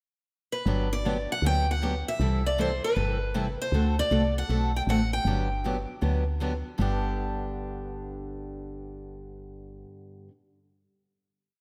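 A bright, boxy steel-string acoustic guitar with fresh strings and audible finger squeak picks a motif-based melody in period phrases until 6.4 s in this charming, lively jazz manouche piece in G major at 157 BPM with a swung feel, over a second picked acoustic guitar playing four-to-the-bar rhythm, short and accented on two and four, and a round, dark, woody FM bass playing two-beat root and fifth with walk-ups, all up front in light reverb before the tune settles on a final G chord at 6.8 s.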